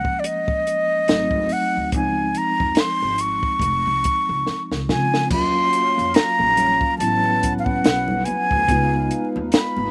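This R&B and neo-soul excerpt feels soulful and sensual, settling into an unhurried, lightly swung groove. A breathy concert flute carries the melody up front, close-miked with a straight tone and soft attack, over a mellow, clean tine electric piano heard through its built-in speakers. Beneath them, a woody, thumpy pizzicato upright bass on gut strings joins a dry, compact cocktail drum kit with dark cymbals, a high-tuned snare and a punchy kick. A drum fill from 4.5 to 5.3 seconds leads into the second section. There, a shimmering, retro pulse-width pad built from detuned sawtooth and pulse waves enters with slow attack and chorus, alongside very quiet, ringing congas played with soft hands. Recorded outdoors with little reverb, the track carries vinyl crackle across its surface.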